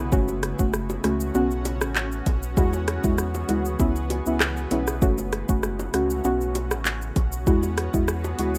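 Dancehall at 98 BPM in F# minor, tough and bouncy, this short cut from a longer piece cycles through F#m, Bsus2, Eadd9 and C#m7 over a deep, full sub bass with octave. An up-front, electronic afro-pop kit with a deep kick, metallic hats, handclaps, rim click and shaker drives the groove, while mellow, warbling chord stabs with chorus and a dark vintage tone sit above, and a cloudy, blurred granular pad with its own reverb pumps underneath. Round, low-tuned bongos stay in the background, and the whole has the light reverb and rough feel of a home demo mix.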